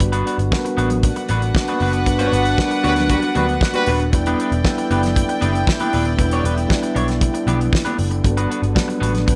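Celebratory and joyful, this disco excerpt moves at 116 BPM in a straight 4/4, shifting between Gmaj7 and Em7 chords. A damped 70s drum kit sits up front with a fat snare, tight kick and hi-hat, alongside a dark, round, foam-muted picked electric bass. An electric guitar at the edge of break-up adds compressed, slightly broken-up picked accompaniment, while a mellow, clean tine electric piano fills out the harmony and a French horn section holds soft-attack sustained chords in the background. Bright, high-tuned congas slip in very quietly at 0.5 seconds, and a dark studio string section enters at 1.0 seconds with a floating, sul tasto second line. A band accent lands between 2.1 and 4.1 seconds, where a smooth-topped pop horn section adds brief stabs, all set in light reverb.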